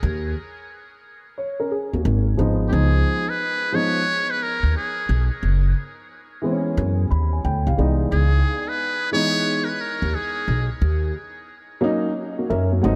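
A laid-back 4/4 groove at 89 BPM, swung on the sixteenths, carries this cool, nocturnal jazz-hop excerpt in C# dorian. A woody, pizzicato upright bass with steel strings opens the passage up front, and a dark, mellow concert grand with deep lows and short sustain joins at 1.4 seconds, adding smooth vintage-tinged chords and a couple of brief fills. At 2.7 seconds a trumpet with a metal mute takes the solo melody until 10.7 seconds, its brilliant yet buzzy, thin tone shaded by breathy scooped notes, light vibrato and a diffuse ambient delay. The harmony drifts through jazzy extended chords such as D#m7, C#9, F#9sus4 and C#m9. A huge ambient reverb soaks the whole mix in a dreamy haze, while the instruments stay close and present.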